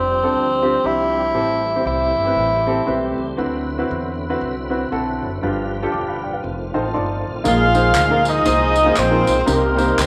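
A swung 4/4 pulse at 118 BPM drives this uplifting, soulful uptempo gospel excerpt, where a warm, subtone tenor saxophone with scooped notes carries the opening melody until 3.2 s over an intimate, woody upright piano that adds fills, a lightly overdriven tonewheel organ holding sustained chords through a slow rotary speaker and chorus vibrato, and a growly, thumpy pizzicato upright bass, before a dark, punchy horn section in octave doubling takes over the melody at 7.5 s alongside tambourine and group handclaps, the whole mix sitting in a wet echo chamber reverb.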